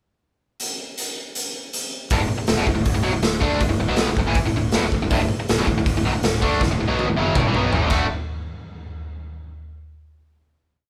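The recording has a raw, live-in-one-room sound with light reverb, as a garage rock band stomps through a short, swaggering piece at 161 BPM in a straight 4/4, centred on D major. The acoustic drum kit opens alone at 0.6 seconds with a pickup bar, its punchy kick, medium-tuned snare, hi-hat, toms and crash sitting up front in a bright stone room that pumps, the kit sounding saturated and gritty with a rolled-off top. At 2.1 seconds the biting, double-tracked overdriven guitar lands on a picked power-chord riff over a D chord, bright and up front, while the fuzz-laden fingered bass, round and punchy but set back in the background, doubles the riff in a quarter-note figure. The drums drive a garage stomp groove beneath them and break into a fill from 6.6 to 8.1 seconds. The piece closes on a final hit from 8.1 to 9.6 seconds.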